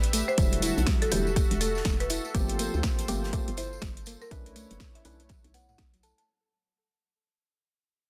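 An overdriven, deep electronic kick sits up front in this smooth, hypnotic deep house excerpt at 122 BPM, with a 16th-note swing, joined by a punchy, overdriven deep house kit with metallic hats, a polished acoustic studio kit and a jingly tambourine in the background. A hollow, bouncy FM bass pumps under a chorused, warbling analog pad, while a dry, woody marimba carries the melody with 12-bit sampler grit and delay, a dark, percussive organ stab adds chorused, delayed hits, and a soft, round pluck plays very quiet arpeggios. The harmony moves through Em11, Gm11 and Bm11 in a dense, heavily limited mix with small room ambience, the whole drop fading out as it plays.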